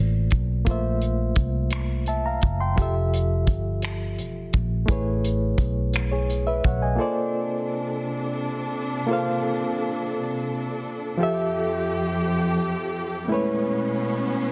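A bright reed electric piano with fast tremolo opens this sensual, slow six-eight R&B fragment alongside a round, foam-muted vintage fingered bass, joined at 0.3 seconds by a dry, damped 70s drum kit of finger snaps, hi-hat and tight kick; by 7.0 seconds the bass and drums have fallen away as a veiled, con sordino studio string section takes over with lush bowed chords beneath the piano, which adds a brief fill at 14.4 seconds, the whole set in light reverb and small-room ambience under a dense, heavily limited modern master.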